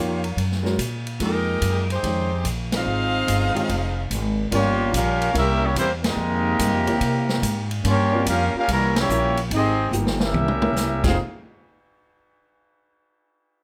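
Dramatic and sultry, this big band swing excerpt moves at 144 BPM in 4/4 with a swung eighth-note feel, set in F minor and tuned to A4 = 444 Hz. A clear saxophone section carries the opening melody with vibrato and a soft attack. Beneath it sit an intimate grand piano with audible action noise, a woody pizzicato upright bass placed up front, and a drum kit with a medium-tuned snare and boomy kick. At 2.7 seconds a trombone section in bucket mutes adds a veiled second line with light vibrato, and the saxophones drop out at 4.1 seconds. From 4.5 seconds the harmony shifts to F harmonic minor as a tight trumpet section with a smooth top takes over the melody over a cycling Gm7b5, C7b9 and Fm9 progression. Band accents punctuate the passage, a drum fill arrives late on, and moderate large studio reverb gives the ensemble a natural room sound.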